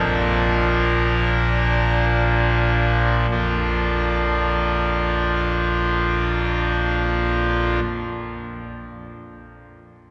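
A pipe organ sounding its trumpet stop opens on a Bb chord, alone from 0.0 to 7.8 seconds, in this brief, reverent classical fragment in Bb major cut from a longer chorale-style piece. The stop speaks with a brassy, bright baroque voicing and a distinct chiff at the start of each note, placed up front in the sound. In free time, the opening phrase slows down through its first 3.3 seconds before a second section takes over. The organ spans a broad compass from Bb1 up to Bb4, pairing a deep foundation with ringing upper tones. A wet cathedral reverb, lasting 5.8 seconds, surrounds the instrument with the spacious echo of a church or concert hall, lending the passage a serene, devotional calm.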